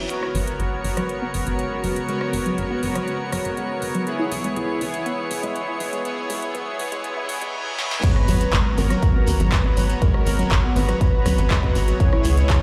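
A detuned analog pad with chorus and tremolo, airy supersaw stabs with tape echo, and a tight sawtooth sequencer bass all pump against the sidechain from the first moment of this dreamy, emotional progressive house passage, while quiet reverse-cymbal, riser and sub-drop effects build tension. A soft, round chorused pluck arpeggiates in the background and a calm, glassy harmonics texture drifts overhead as filter sweeps move across the pad and pluck, and a big-room kit with a punchy snare, metallic hats, claps, rim clicks and crash cymbals carries the build to a drum fill at 7.8 seconds. At 8.0 seconds the drop lands with an impact, a layered up-front electronic kick, a thick, bold unison lead with tape echo, ringing close congas and bongos, and a grainy, distant shekere, all set in a large studio reverb.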